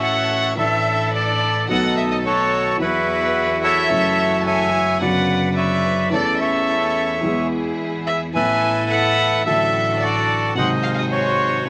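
A wet, reverberant studio sound frames this sultry, tense tango excerpt at 108 BPM in A major with a rubato feel, where a reedy, bright bandoneon carries the melody up front, an expressive bowed violin with vibrato and portamento sings a second line, a warm concert grand piano with deep bass provides the accompaniment, a rich, smooth string section adds stabs in the background, and a biting, earthy bowed double bass with a nasal, close tone anchors the low end.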